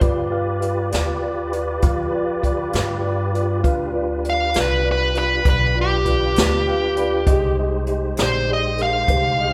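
This slow blues moves at 66 BPM in a straight 12/8, with a soulful, brooding mood, and is cut from a longer piece. A jazz brush drum kit sits up front, with a high-tuned snare, boomy kick and hi-hat, while a woody pizzicato upright bass and a mellow, boxy grand piano support the harmony over a tonewheel organ that holds clear, clean chords through a slow rotary speaker and chorus vibrato, its key click audible. At 4.3 s an overdriven, smooth electric lead guitar enters up front with a dark, picked melody. The piano adds a short fill from 6.4 s, and the harmony shifts from G7 to Fm7 at 7.3 s. A moderate recital hall reverb gives the ensemble the natural ambience of a church or concert hall.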